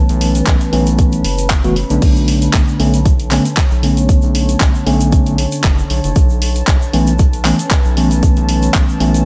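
A dry, close-sounding mix frames this brief cut from a longer deep house piece, moving at 116 BPM in 4/4 with a light swing on the sixteenths and a warm, hypnotic mood. An up-front, deep electronic kick drives from 0.5 s to 8.9 s, while a layered, tape-warm drum kit adds crash cymbal, handclaps and hi-hat, joined by a grainy, bright tube shaker sitting low in the mix. Beneath them, a round analog bass blends square and sine tones with a wave-folded edge, fast attack and a sustained, evolving body, pumping against the kick. A mellow tine electric piano plays clean stabs through its built-in speakers, trailed by digital delay and also ducking with the sidechain. Far back, a moody ambient pad of detuned sawtooth unison with a sub octave swells in slowly through chorus and its own reverb, carrying the chords from Aadd9/B to Bm9 at 2.0 s and back to Aadd9/B at 6.2 s.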